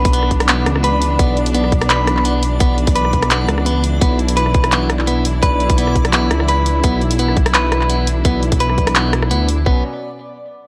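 A half-time drum and bass groove at 170 BPM in B minor drives this cinematic, spacious excerpt, with a tight, up-front electronic kick layered under a produced kit of handclaps, hi-hat and rim click, and a deep, rumbling detuned saw bass beating beneath. Above it, a bowed chamber string section holds smooth sustained chords with vibrato, roughened by vintage 12-bit sampler grit and sidechain pumping, while a clean, compressed electric guitar picks arpeggios through tape echo and a dreamy reversed texture swells brightly in the background with its own reverb. The drop rests on a Bm chord until the harmony shifts to B5 at 9.7 seconds, captured in a dry, gritty recording with light reverb.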